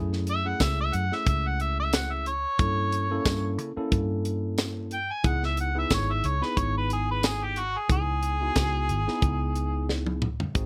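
Straight-eighth soul blues with a smoky, brooding mood, cut from a longer piece, where a mellow, overdriven harmonica takes the solo from 0.3 seconds with scooped notes and light vibrato. Beneath it, a clean tine electric piano through a combo amp adds lush chorus, while a dark, round, foam-muted fingered electric bass and a tight funk kit of hi-hat, kick, high-tuned snare, tambourine and toms sit up front. The dry mix moves through F#m9, Gdim7 and C#m9 before a drum fill at 9.9 seconds.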